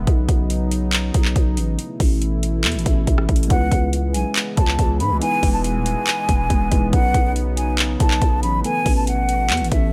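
Hip hop and trap in C# minor at 140 BPM, moving in a half-time 4/4 feel with an eerie, melancholic mood, taken from a longer piece. The opening break runs to 3.5 seconds, where a sweeping, detuned sawtooth pad with a slow attack and chorus holds sustained chords beneath a growling, buzzy 808-style bass and an up-front electronic trap kit of hard-clipped kick, metallic hi-hats, handclaps and rim clicks with a tape-warm edge. At 3.5 seconds a breathy concert flute takes the melody, tongued and expressive with vibrato and lifted highs, sitting high and forward in the mix. A worn, slightly out-of-tune tine electric piano enters at the same moment with clean, direct accompaniment. The harmony cycles through Badd9 and Asus2, then C#m7 and Emaj7, in a dry, close-sounding space.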